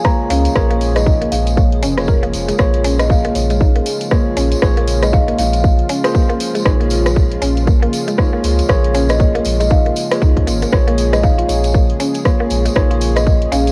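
Warm and hypnotic, this afro house excerpt at 118 BPM in Bb minor rests on a single Bbm7 chord with swung 16ths, as a dark, woody kalimba carries the melody through tape echo over a smooth, detuned sawtooth pad and round FM mallet-like synth pluck arpeggios, both chorused and set in the background, while a clean tine electric piano adds echoing stabs, a punchy, up-front electronic kick drum and a house drum kit of hi-hat and rim click, both re-recorded in a small room, drive beside a jingly, saturated tambourine, and a deep, pumping sine sub bass enters at 0.3 seconds, all within a lightly reverberant home cassette recording.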